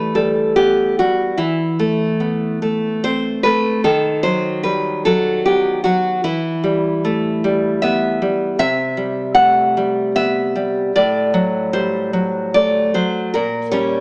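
Flowing in a supple three-beat metre with rubato, this romantic piece for solo classical guitar sounds like a fragment lifted from a longer work, carrying a passionate yet melancholic mood. The nylon-string guitar plays alone from 0.0 to 14.0 s, fingerpicked with a bright, full-bodied tone from fresh strings and a deep classical character, and audible finger squeak gives it an intimate, human touch. Its range stretches from low A2 up to F#5, and it sits up front in the mix. The harmony moves from Em through Am/E and B/D# and back to Em before turning to Cmaj7, F#dim/A and a closing A#m6. A moderate recital hall reverb of about 1.8 s surrounds the instrument, though the overall sound carries the character of a small speaker.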